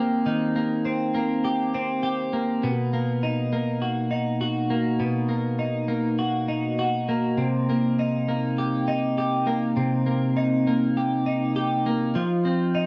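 At a laid-back 101 BPM in 4/4 with a light sixteenth-note swing, this sunny indie pop fragment features a lone twelve-string electric guitar, picked clean and up front across its 12.9 seconds. The guitar's bright, twangy, compressed tone is coated in lush chorus and vibrato as it moves from Eb6 through Bmaj7 to Cm7 before touching an F7 at 12.2 seconds. Light reverb sits around an otherwise dry, close 1970s-style studio sound.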